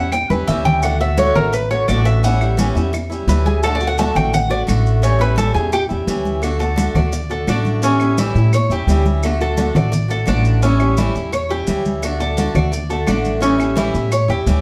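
Latin music in the Cuban son and guajira tradition, this danceable, relaxed excerpt moves at a brisk 172 BPM in 4/4 in D major, rocking between D and A7 throughout. The Cuban tres sits up front with a mellow, metallic tone from its doubled strings, playing arpeggios and taking a solo over the opening 6.4 seconds before the second section begins. Beside it, a thumpy upright bass with gut strings is plucked in a dark, woody register, while a boxy, picked swing-style acoustic guitar fills in the accompaniment. In the background, damped congas with a thick skin sound close and dry, a short drum fill arrives at 0.3 seconds, and compressed, saturated claves join grainy, band-limited maracas with a vintage texture. The whole band is heard from further back in the room, with a moderate studio reverb giving the sound a gentle sense of space.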